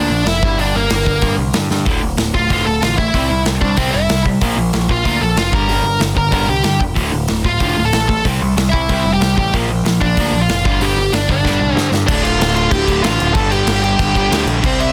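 Dense, heavily limited and nearly dry with a faint mains hum, this angry, raw punk rock excerpt charges along at 188 BPM in a straight 4/4. A dark, distorted bluesy lead guitar sits up front, carrying the melody through digital delay, over a warm overdriven rhythm guitar riff and a growling, bright picked bass. A boomy, up-front drum kit with bright cymbals enters at 0.3 seconds, a second bright, distorted guitar riff joins at 1.9 seconds, and the chords cycle Gm, Dm, C and Bb before a drum fill at 11.4 seconds pushes into a closing stretch on Dm and G5.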